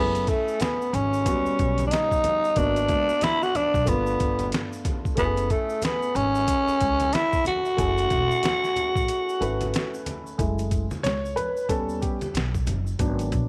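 A gritty, tape-warm boom bap groove sits in a small room with light reverb, giving this mellow, smoky jazz-hop cut from a longer piece an intimate, close feel. At 92 BPM in 4/4 with a lazy swing on the sixteenths, the sampler-style drum kit lays down a thumpy kick, medium-tuned snare and hi-hat from 0.2 seconds, compressed and pitched down, while distant tube shaker and congas add bright, hard-handed accents far back in the mix. The woody pizzicato upright bass and a dark, worn concert grand piano, its action noise audible, carry the F# minor harmony through chords such as F#m9, D#7alt and G9. Up front, the growling tenor saxophone plays the melody with a breathy subtone, raspy vibrato and scooped notes, its soft attack and smooth top keeping the tone mellow until it stops at 10.0 seconds. After a break beginning at 9.1 seconds, the piano takes a solo from 10.4 seconds to the end, backed by the bass, drums and percussion.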